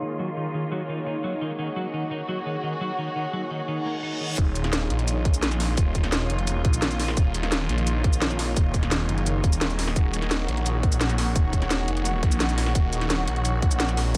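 A swirling, saturated detuned saw bass drives this aggressive, futuristic dark technical drum and bass excerpt in Eb minor at 172 BPM, arriving at the drop at 4.4 s with a tight, up-front electronic kick and a kit of cracking snare, metallic hats and cabasa, after an intro where filter-swept dark strings, a twangy twelve-string electric guitar playing arpeggios until 4.3 s, and a blurred granular cloud pad pump under sidechain before a reverse cymbal at 3.8 s.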